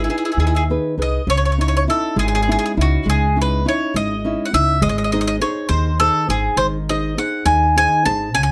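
An Italian folk serenade in C# minor, this short excerpt from a longer piece moves at 68 BPM in a straight 6/8, with a wistful, passionate mood. A bright, picked bowl-back mandolin carries the melody up front, its double strings ringing between F#4 and A5, while a second mandolin line sounds briefly on E4 only until 0.6 seconds. A small, fingerpicked nylon-string guitar supplies warm accompaniment beneath, and a woody, thumpy upright bass on gut strings plays pizzicato in the low register, dark in tone. The harmony moves from G#m to C#madd9 at 1.3 seconds, then settles on G# at 4.8 seconds. Close, detailed microphones and light reverb give the small ensemble an intimate, present sound.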